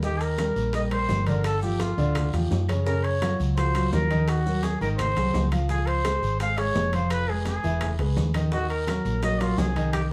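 A mellow trumpet with vibrato and a soft attack leads this driving, sophisticated Afro-Cuban jazz excerpt at 170 BPM, carrying the solo melody from F4 to F5 with plate reverb and a distant, roomy presence that still sits up front. Beneath it, a baby grand piano plays a natural-sounding accompaniment through rich harmony such as Gbmaj7#11, Dbmaj7 and Fdim, while a hollow-body short-scale electric bass, fingered and amped, gives a dark, round low end that stands forward in the mix. The percussion stays mostly in the background: low-tuned congas ring with a compressed, saturated edge under soft hands, tight high-tuned bongos and a raspy guiro add detail, and grainy maracas add a faint, mellow texture. Metal-shell timbales enter at 0.2 seconds with a close, dry ring, and woody claves join at 0.4 seconds. The whole group is heard from further back in a wet studio space, and a drum fill at 9.9 seconds closes the cut.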